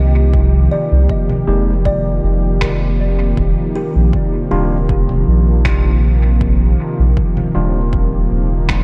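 A deep, round sub bass sits up front through this hazy, spacious ambient dub fragment at 79 BPM in 4/4, tuned to A4 = 444 Hz, beneath a smooth, warbling sawtooth pad with chorus and vintage 12-bit sampler grit that holds sustained chords from F7sus2 to Ebmaj9. A woody, hollow kalimba plays mellow arpeggios with dub echo until 6.6 s, while a punchy electronic kick stays in the background and muffled, compressed congas and finger snaps arrive at 1.3 s, also trailing dub echo. Barky, overdriven tine electric piano stabs with their own echo enter from 1.5 s, and the whole dreamy mix is soaked in a moderate cathedral reverb.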